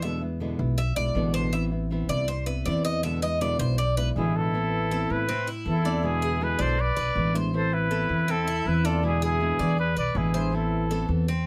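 Close, detailed microphones and light reverb give this Latin excerpt an intimate, present sound. A nylon-string guitar plays fingerpicked, classical-style accompaniment with audible finger squeaks. An up-front upright bass adds woody pizzicato lines on steel strings. From 0.0 seconds, a Cuban tres takes the solo spotlight with metallic, picked arpeggios on its double strings, some of them octave-doubled. At 4.2 seconds a breathy trumpet enters up front with the melody, soft-attacked and whispered with vintage vibrato, while a bright wooden flute traces a pure second line with lifted highs in the background. The harmony alternates between E7 and Amadd9, giving the music a nostalgic yet danceable feel.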